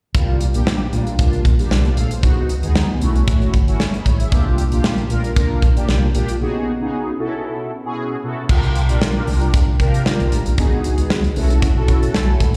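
Early-eighties boogie funk at 115 BPM in a straight 4/4, this funky, late-night excerpt is driven by a tight, up-front acoustic drum kit with a medium-tuned snare, hi-hat and crash cymbal, and a dark, round fingered electric bass sitting prominently in the low end. A mellow, detuned sawtooth synth brass part with a soft attack and sustained, evolving tone adds vibrato and filter sweeps, colored by chorus, phaser and slapback echo, as the harmony moves through C9sus4, Db9sus4 and B9sus4 chords, with a break from 6.4 to 8.5 seconds before a new section begins. The band sounds like a live gig heard through the venue's PA, carried by the reverb of a recital hall.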